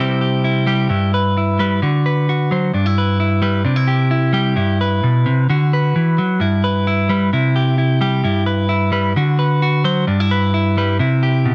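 In a straight 4/4 feel, this warm, carefree highlife passage, cut from a longer piece, features a solo clean electric guitar, picked, compressed and scooped, sitting up front with a cassette-tape tint as it cycles through C, G6 and D chords for 11.5 seconds, all set in moderate spring reverb on a homespun cassette recording.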